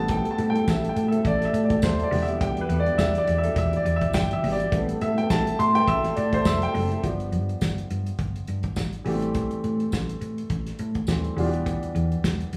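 A swung sixteenth-note disco groove in 4/4 rides on a dry, dark soul drum kit with a tight kick, as a round, punchy hollow-body bass and a jingly tambourine in the background keep this glamorous, danceable clip moving. A warm baby grand piano sits up front and takes a solo over the first 7.0 seconds, backed by a soft, flute-like tonewheel organ and a clean, compressed electric guitar with vibrato, both tucked behind and stopping at 7.0 seconds. The band sounds as if playing together in one room, wrapped in wet studio reverb, with the harmony moving among Am7, Em7 and G7.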